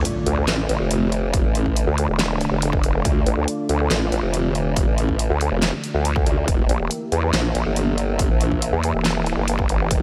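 A nasal, saturated vowel-sweep wobble bass with overdrive and chorus leads this aggressive, heavy half-time wobble dubstep excerpt, joined by a pulse-wave formant-sweep wobble bass from 0.5 seconds, a bright, detuned unison pad pumping under sidechain, a very quiet electronic impact, a big-room dance kit with a huge snare, handclaps and hi-hat, and a punchy electronic kick arriving at 1.3 seconds, within light digital ambience.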